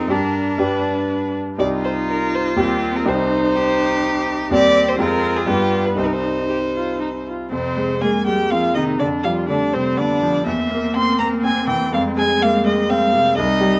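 Restless and dramatic, this fragment of a quick classical-period movement for piano quartet moves in 3/4 at 122 BPM with a rubato feel, tuned to A4 = 436 Hz. It opens in C minor and turns to F minor at 7.5 s. An up-front, warm violin with vibrato carries the melody over a rich, close cello second line, while a bright, brilliant concert grand with deep bass and short sustain and a smooth viola supply accompaniment in light reverb.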